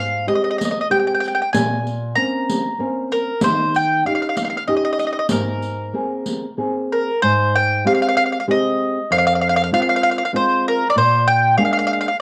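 A homespun cassette recording with moderate studio reverb carries this fragment of a wistful, passionate Italian folk serenade in a rubato three-four, where an up-front, woody mandolin sings the melody on picked double strings over a small, dark, thumb-plucked nylon-string guitar with a tape-worn tint, while a distant riq with dark jingles and soft hands sounds from 0.6 to 6.5 seconds.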